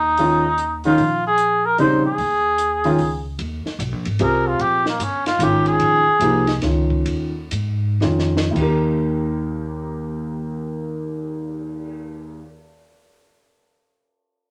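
A cup-muted trumpet and a woody pizzicato upright bass open this modal jazz excerpt in a swung three-beat metre, with a warm grand piano and a compact cocktail drum kit joining almost at once. The mood is open and hypnotic, set over sustained suspended harmony that finally resolves to a plain major chord near the end. The trumpet sits up front with a soft, veiled tone, shaping its jazz phrasing with vibrato and scooped notes, and takes a solo turn from 3.4 seconds before falling silent at 6.6 seconds as the pace slows. The piano, also up front and natural in sound, carries the accompaniment, while the dry kit adds dark cymbals, a punchy kick and a high-tuned snare beneath, including a fill at 8.0 seconds. A moderate studio reverb gives the ensemble a modest sense of room.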